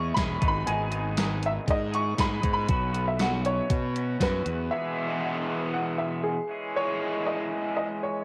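A straight 4/4 indie rock groove at 118 BPM in E major, with a gated 80s digital drum machine of thumpy kick, gated-reverb snare, hi-hat and tambourine, overdriven and up front, that runs from 0.2 to 4.6 seconds alongside a growly, fuzz-soaked fingered electric bass that stops at 4.7 seconds. Over it, a bright, double-tracked garage guitar riff with overdrive and cassette grit plays throughout, while a woody, slightly detuned upright piano carries the melody through analog delay, moving from G#m and Bsus2 to Eadd9 and C#m/E. The wistful yet carefree mood gets a light digital ambience and a homemade cassette feel in this short cut from a longer piece.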